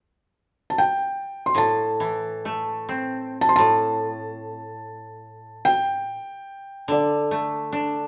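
Japanese traditional chamber music in free time, this calm, austere excerpt opens with a felt-muted upright piano carrying the melody in a soft, dark, intimate voice with audible action noise, joined at 1.5 seconds by a dry, woody koto played with fingerpicks in a lower accompaniment, both up front in a moderate recital hall reverb.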